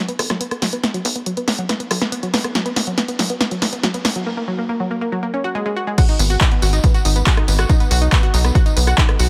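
Driving and bittersweet, this uplifting trance passage opens on a build-up where a round, detuned analog pluck plays arpeggios under a filter sweep, colored by chorus, delay and sidechain pumping. Beneath it, a tight sawtooth sequencer bass pumps, and a punchy, tape-warm analog drum machine rolls through a fill of snare, handclaps, hi-hat, rim click, tambourine and crash cymbal before a brief break at 4.3 seconds. The drop lands at 6.0 seconds as an up-front electronic kick drum enters, all in a dry mix.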